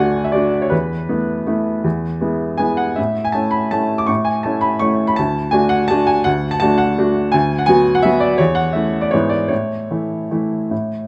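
A bright, woody upright piano plays alone, close and up front, in this sparkling, elegant classical waltz fragment cut from a longer piece, moving in a rubato 3/4 at roughly 145-177 BPM in A major and tuned slightly low, spanning D2 to D6 as its harmony travels from D through Esus4 and E to A, then on through Bm/D and E7/G# to settle on A at 9.5 seconds, all set in a moderate recital hall reverb.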